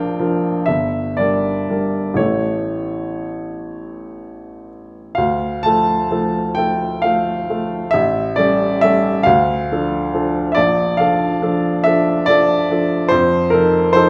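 Dreamy and nostalgic, this brief cut from a longer romantic nocturne for solo piano drifts in D minor at a slow, rubato pace in 12/8, around 39-49 beats per minute on the dotted quarter. A warm upright piano, woody and polished with long sustain, sits up front and spans from G1 to A5 across all 14.1 seconds, moving through harmonies from Bb and Gm to A, Dm, A7, Dm again and Bbmaj7 before reaching F7. A moderate recital hall reverb surrounds the instrument with a graceful, lingering ambience.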